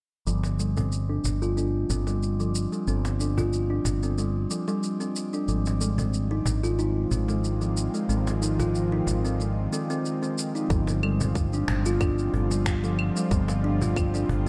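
A lightly swung 92 BPM groove in 4/4 sets this earthy, mystical organic downtempo piece in motion, with produced electronic shaker, claves and finger snaps, a woody cajon played with soft hands, and a round, dark fretless bass sitting up front from the start. A ringing, thumb-plucked kalimba spins arpeggios through a low-pass filter sweep, delay and shimmer reverb over chords moving from G7sus4 to Ab6. A string-like, tense drone with vibrato and sidechain pumping enters at 6.8 seconds, and a tight electronic kick joins at 10.7 seconds as the harmony returns to G7sus4, all within light digital ambience in this cut from a longer piece.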